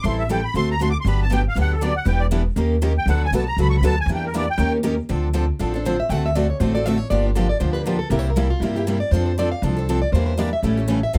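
Close, detailed microphones and light reverb frame this bittersweet, virtuosic snippet of swinging jazz manouche at 238 BPM. A reedy, shimmering musette accordion leads the melody until 4.7 s, and a plugged-in parlour guitar with a warm, picked tone carries a second line from 5.7 s. Two picked steel-string acoustic guitars keep up the accompaniment throughout: a bright concert guitar up front and a full-bodied dreadnought with fresh strings in the background, both showing finger squeak. Beneath them sits a woody, dark, thumpy gut-string upright bass, plucked pizzicato and placed up front, over chords moving from Am7 and D7 toward Gm7, C7 and F6.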